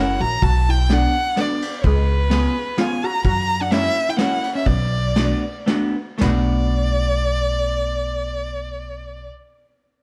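A bittersweet, nostalgic musette waltz opens with a rich, bowed violin carrying the melody up front with vibrato and portamento, over a shimmering steel pan second line, clean picked hollow-body electric guitar and a woody, dark pizzicato upright bass. Brushes on a smooth, rolled-off drum kit join at 0.4 seconds, and the swung waltz slows from 3.2 seconds before the drums stop at 6.3 seconds. The strings, pan and guitar carry on into a new section, recorded close and dry, in this cut from a longer piece.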